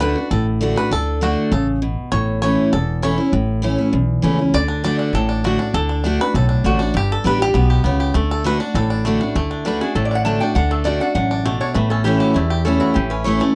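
Virtuosic and joyful, this fast bluegrass excerpt in D major runs at 199 BPM, with a bright, twangy five-string banjo taking the lead from the start over a full-bodied, up-front picked dreadnought guitar and a thumpy, woody upright bass played pizzicato on gut strings. At 9.7 seconds a nasal, metallic lap resonator guitar played with slide and fingerpicks joins the banjo on the melody. The sound is dry and close, like a 1970s studio session.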